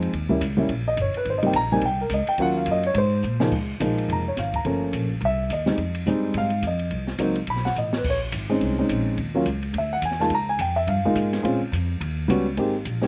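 This short cut from a longer piece has a dry, close sound, recorded outdoors with little reverb, so each instrument comes across plainly. It is small-group jazz in the swing and bop tradition, moving briskly at 212 BPM in 4/4 with a swung eighth-note feel, tuned slightly low to A4 = 438 Hz, and the mood is sophisticated and warm. A mellow grand piano sits up front and plays accompaniment throughout with a short sustain, ranging from low Db2 up to B5. Beneath it, a woody pizzicato upright bass with steel strings holds the low end, while an acoustic drum kit with dark cymbals, a high-tuned snare and a boomy kick draws on ride, hi-hat, crash, snare and kick, with fills at 3.2 and 7.8 seconds. The harmony is rich, moving from Eb7b9 and Abmaj9 through Db6, Fm9 and Bbm11 before closing on Eb7alt.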